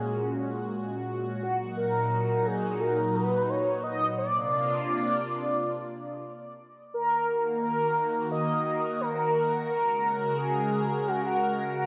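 A smooth, nasal synth lead carries the melody across this nocturnal, cinematic synthwave excerpt, its sawtooth-and-triangle tone softened by analog chorus, delay and vibrato. Beneath it, a phased analog pad holds sustained chords with a swirling, warbling, detuned character that gives the sound a vintage cast. The piece moves at 87 BPM in a straight 4/4, with harmony drifting through Gbadd9, Ebm and Bbadd9 before returning to Ebm and Gbadd9. A brief stop from 6.3 to 6.9 seconds marks the turn into a new section. Both parts sit up front in a bright 1980s-style digital production, bathed in a lush hall reverb with a 2.1-second decay.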